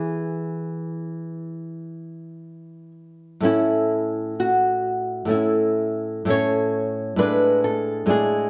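Serene and tender, this romantic guitar duo in A major drifts at a rubato 58-68 BPM in 4/4, with one fingerpicked nylon-string guitar carrying a small, warm melody up front while a second fingerpicked nylon-string guitar, woody and full-bodied with the sound of old strings, supplies deep classical accompaniment through E, A and a rootless E7/A, both sharing a wet studio reverb that suggests a live performance in one room in this short fragment of a longer piece.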